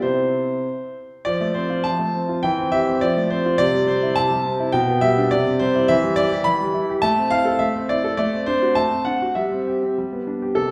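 Classical-period piano sonatina in F major at 103 BPM in 2/4, playful and graceful with a rubato feel: a solo concert grand with a clear, natural tone, deep bass and long sustain spans B2 to B5, its harmony moving from C through F, Em, Am and D7/A to settle on G near 10.0 seconds, all set in a wet recital hall reverb heard from further back in the room in this brief cut from a longer piece.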